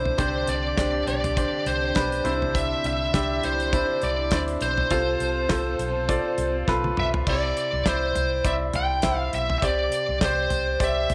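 A distorted, bluesy lead guitar carries the melody up front over clear, open concert grand piano chords, with a round, foam-muted vintage electric bass and a very quiet, lush bowed string section beneath, as a damped 70s drum kit with a fat snare, tight kick and dark cymbals joins almost at once. This uplifting, anthemic piano-driven pop passage has a lightly swung feel, and light reverb gives it a small-room ambience. A drum fill at 6.7 seconds leads into a new section, where the strings drop out at 7.2 seconds and the guitar, piano, bass and drums carry on through the end of the excerpt.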